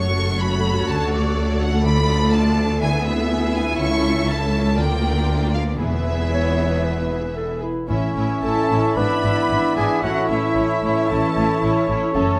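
Classical orchestral excerpt in A major, urgent and restless, moving with a rubato pulse around 108-126 BPM as bowed strings with vibrato carry the opening: violins take the melody over a second violin line, with violas, a clear cello section and a rich double bass section below, while a ringing harp plays arpeggios in the background and a soft-attack clarinet slips in at 6.3 seconds. At 7.9 seconds the music settles onto A and the winds join, with an airy flute, a mellow oboe and a distant bassoon, while a horn section holds chords and round timpani strokes sound briefly. A trumpet adds stabs from 8.4 seconds, and the whole sits in a recital hall of moderate reverb captured with close, detailed microphones.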